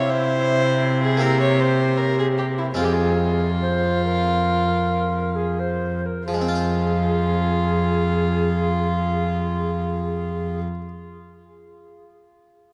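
A rich, gut-strung cello sits close and up front, giving this solemn, introspective baroque-style sonata movement a reedy, bowed foundation in its low register. Above it, a single warm violin carries the second line with light vibrato and a period-style tone, while a hollow tenor recorder sounds the melody from a more distant place, its airy, wooden voice marked by a crisp chiff at each attack. A bright Italian-style harpsichord plucks a very quiet accompaniment on one set of strings, spanning from the bass to the upper range. The straight, stately pulse slows over the opening phrase, and the harmony moves from C through C7 to F minor before a new section begins at 6.3 seconds. Everything rings out in a vast cathedral with a long, wet reverb; the recorder, violin and cello stop at 10.6 seconds, leaving the harpsichord sounding until 10.9 seconds as this excerpt ends.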